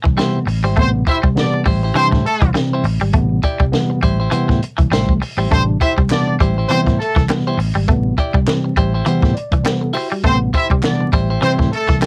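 Hypnotic and sly, this funk groove at 101 BPM in A minor rides a swung sixteenth feel over a single Am7 chord, with a warm, compressed clean guitar riff down low and a twangy, bright second guitar shimmering with harmonic tremolo above it, a growly, punchy fingered bass, a dry cocktail drum kit with a high-tuned snare, mellow tine electric piano stabs that break into a fill at 9.1 s, and an up-front, smooth-topped horn section playing a second line with light vibrato, while crisp group handclaps join at 6.1 s, all captured as a home cassette recording with light reverb and vinyl crackle.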